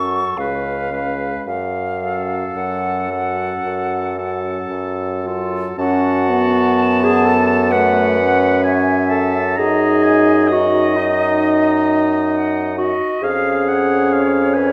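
A rubato 4/4 pulse drifting between 54 and 68 BPM carries this slow, melancholic and elegiac romantic movement for wind quintet in F# minor, a fragment cut from a longer piece. A pure, close-miked concert flute with vibrato sings the melody over an oboe second line with light vibrato and a smooth top, while a distant, roomy clarinet and a vintage-toned French horn fill the accompaniment and a soft-attack bassoon sits up front on the bass, all five playing throughout. The recital hall's reverb lends a dark, warm glow as the harmony moves from C#7 to F#m, touching G#5/F# at 9.6 seconds before settling on C#/E#.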